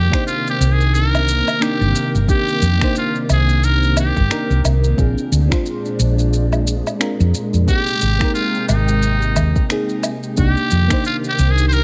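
A lightly reverberant, relaxed excerpt of sunset chillout in C minor at 89 BPM with a gentle 16th-note swing, where a buzzy, raspy metal-muted trumpet with tape echo carries the melody over a mellow FM electric piano treated with chorus, phaser and delay, a silky, warbling string machine holding sustained chords, a round, dark hollow-body short-scale bass sitting up front, overdriven electronic finger snaps, shaker and woodblock, and a soft, tape-warm electronic kick, all moving through Cm7, Bb7 and Abmaj7 before returning to Cm7 at 10.4 seconds.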